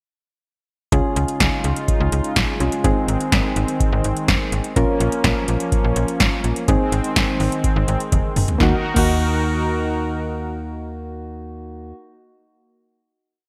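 A straight 4/4 drum-machine beat at 125 BPM, with a deep kick, punchy snare and metallic hats under gated reverb, drives this melancholic and cool synth-pop piece in Eb dorian, where a snappy slap-like FM bass, round electric-piano-like keys with chorus and a brassy, detuned analog pad with chorus and tremolo move through Dbadd9, Ab, Bbm and Ab before a drum fill at 8.1 seconds leads into a held Ebm final chord, all set in a lush hall reverb with bright 1980s-style digital production.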